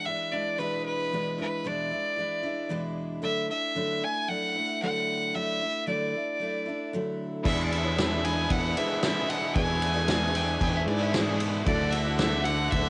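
A bright, boxy fiddle with light vibrato carries the melody up front over a picked steel-string acoustic guitar with fresh, full-bodied strings, both with a cassette-tape character, in a jangly, warm folk rock and heartland rock groove at 114 BPM in a straight 4/4 that moves between E7 and Dadd9. At 7.4 seconds the band fills in: a biting, double-tracked overdriven guitar riff with spring reverb, a shimmering, reedy musette accordion and a very quiet, mellow grand piano enter further back, and a moment later, at 7.5 seconds, a round fingered electric bass and a loose, roomy drum kit with a fat snare and dark cymbals join up front. At 10.4 seconds an overdriven slide guitar adds a brief second line in the background, all heard as a short cut from a longer piece with a home-cassette sound whose top end is rolled off.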